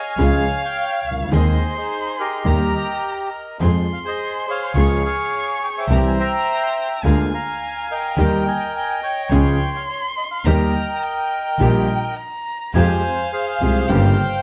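Tense and dramatic, this rubato tango fragment sets a reedy, airy bandoneon up front on the melody while a rich, focused bowed violin with vibrato carries a high second line, an intimate concert grand piano with deep bass, long sustain and audible action noise supplies the accompaniment, a clear studio string section adds soft-attack stabs in the background, and a bowed double bass played sul tasto anchors the low end with a pure, floating tone, all set in light reverb within a dark, warm production.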